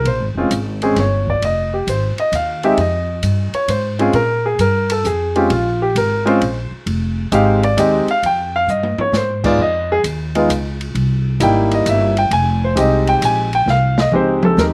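A grand piano and a pizzicato upright bass open this moody jazz piano trio in F minor, with the drum kit joining at 0.1 seconds, all swinging in 3/4 at 132 BPM. The piano carries the melody as a solo throughout, its warm, natural tone placed up front and touched by a slapback echo. Beneath it, the steel-strung bass sounds woody and close. The acoustic kit sits further back, smooth and dark, with dark-toned cymbals, a medium-tuned snare, a boomy kick and a rolled-off top, and it plays short fills at 8.7 and 13.7 seconds. The harmony moves through Fm7, Bb7, Db and C7#9 before settling back on Fm7. The dry, open-air sound has little reverb, and the recording is a fragment cut from a longer piece.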